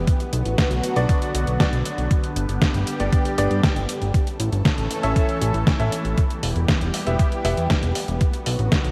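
A thumpy, overdriven electronic kick drum leads this melodramatic, nostalgic italo disco excerpt at 118 BPM in straight 4/4 and E dorian. Beside it sits a fat analog bass, a detuned blend of sawtooth, square and sine waves with wave-folding, a filter sweep and a fast attack, placed up front in the low register. A detuned 8-bit drum machine adds hi-hat and a fat snare, also overdriven and up front, with the grit of being re-recorded in a small room. A lush unison pad with a slow attack, chorus and phaser holds sustained chords over a Bm, G, A, Em progression. From 1.0 to 7.7 seconds, a brilliant baby grand piano plays delayed stabs. A moderate lush hall reverb and vinyl crackle frame the bright 1980s-style digital production.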